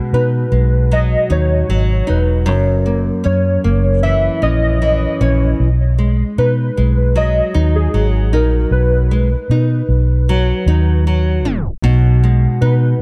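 A fingerpicked nylon-string guitar with subtle chorus opens this laid-back, dreamy bedroom-pop fragment, soon joined by detuned, wave-folded synth keys carrying a nostalgic melody through analog chorus and delay and by a round, punchy, foam-muted electric bass sitting up front, all in a dark, small-room production that halts with a tape stop at 11.4 seconds before the phrase resumes.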